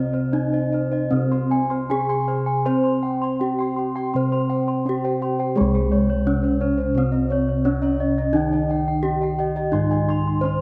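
This stately, shimmering Javanese gamelan excerpt sets a ringing bronze metallophone melody, its paired tuning producing beating shimmer, over a mellow, soft metallophone accompaniment struck with padded mallets, while bright bossed gongs and a vintage-sounding, band-limited metallophone weave arpeggios and round, boxy bossed gongs carry the bass, all five parts sounding together throughout in a moderate concert-hall reverb as the music moves into a new section at 5.6 seconds.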